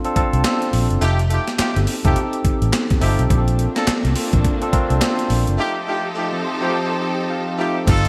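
A clean tine electric piano and a gritty, compressed breakbeat drum kit open this bouncy, slick new jack swing excerpt in 4/4 at 105 BPM, with the sixteenths swung at 61%. The drums sit up front, with a thumpy kick, a high-tuned snare, hi-hat, handclaps and crash, all bathed in gated reverb. A dark, round, foam-muted fingered bass joins almost immediately and stays punchy and forward. A tight horn section adds jazzy stabs from 1.0 seconds, and a lush bowed string section brings sustained chords with vibrato and a smooth top from 3.3 seconds. The harmony moves between Bbmaj9 and F9, and during a break from 5.6 seconds the electric piano plays a fill starting at 6.2 seconds. The bright 1980s-style digital production sits in a moderate hall reverb.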